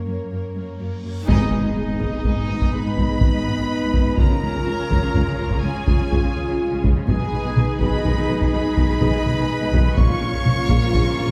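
Dark and dramatic, this epic orchestral film score cue in G# dorian moves at 83 BPM in a broad 12/8, opening with a brief build-up where lush violins carry the melody over a second violin line, smooth violas, mellow French horns and clear, intense cellos before a huge reverse cymbal swells in at 1.1 seconds. At 1.3 seconds the full orchestra lands with a dark impact: heavy-stick taiko drums dominate, a round timpani hit marks the accent, distant trumpets add stabs, and a pure flute line, focused sustained strings, a very quiet tuba and a close, smooth double bass section fill out the harmony as it moves from G#m through C# to A#m. The scoring-stage reverb places the ensemble further back in the room, lending the string sections a lush, symphonic depth, and the passage is cut from a longer piece.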